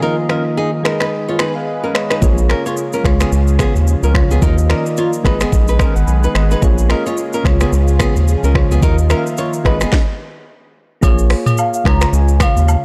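Soft chorused electric-piano-like synth keys, a lush, thick unison pad with chorus and phaser in the background, and a full-bodied fingerpicked nylon-string guitar riff with tape echo open this smooth, hypnotic afrobeats excerpt at 109 BPM with swung 16ths. An electronic afro-pop drum kit of deep kick, sharp snare, metallic hats, snaps, rim clicks, shaker and toms joins at 0.3 seconds, and a round, deep analog bass enters up front at 2.2 seconds. The pad and guitar drop out at 9.9 seconds before agogo bells and woodblock arrive, and a velvety, dark synth lead with portamento and tape echo enters at 11.6 seconds, all over an Ebsus2, Abm, Bbm7, Db cycle in a dry, dark mix.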